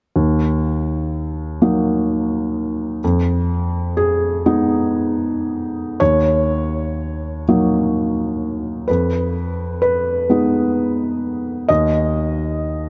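In a rubato lilt of six beats to the bar, the music drifts slowly, its pulse loosening and gathering as it goes. This fragment of a longer neoclassical minimalist piano piece carries a melancholic, wistful mood. A felt-muted upright piano plays alone throughout, its soft, mellow tone sitting intimate and up front, spanning low bass notes to the upper-middle register. The harmony rocks between a minor chord and a half-diminished chord, then repeats that pairing in a second section from 6.0 seconds before the chords give way at 11.7 seconds. A moderate amount of huge ambient reverb lets each note linger in a spacious, hazy halo around the close, hushed piano.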